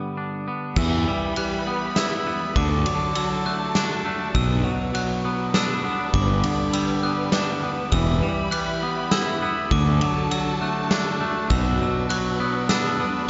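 In a straight three-beat metre, this brooding, cathartic post-rock fragment opens with a twangy, clean electric guitar playing arpeggios through diffuse ambient delay, and at 0.8 s the rest of the band arrives over a cycle of G, Em, D and Bm chords. A big-room arena drum kit with punchy kick, crash, ride and snare sits up front beside a round, dark fuzz bass. Behind them, a clear symphonic string section holds bowed, vibrato chords, while a bell-like glockenspiel struck with brass mallets sparkles in high arpeggios through its own delay; the bass drops out at 11.8 s, and the dreamy mix is soaked in lush hall reverb with its top end rolled off.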